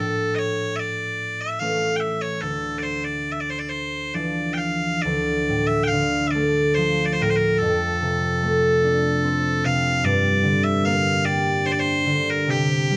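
Bright, piercing bagpipes carry a continuous, up-front melody through this longing, mournful Celtic slow air, moving in a free, rubato three-time feel. A fingerpicked concert harp rings close beside them, its warm, resonant accompaniment moving into a second section from 5.0 seconds. Light reverb and close, detailed microphones give the fragment, cut from a longer piece, an intimate clarity.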